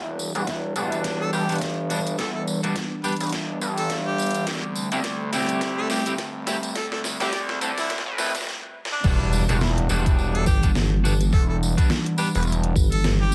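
Vinyl crackle and a light digital ambience frame this funky, gritty glitch hop excerpt, built on a knocking, overdriven electronic kick, an overdriven pop kit with a deep snare, a close, dry tambourine and an aggressive, sawtooth synth bass under a warbling, nostalgic lo-fi pad that pumps in time with the beat. A bright, twangy electric guitar at the edge of break-up plays stabs through dub echo, while a harmonica with light vibrato and scooped notes carries a jazzy solo melody from 1.2 s over a filter-swept build-up that breaks just before the drop at 9.0 s. There a very quiet impact lands, and a nasal, wobbling vowel-sweep bass enters up front at 10.5 s.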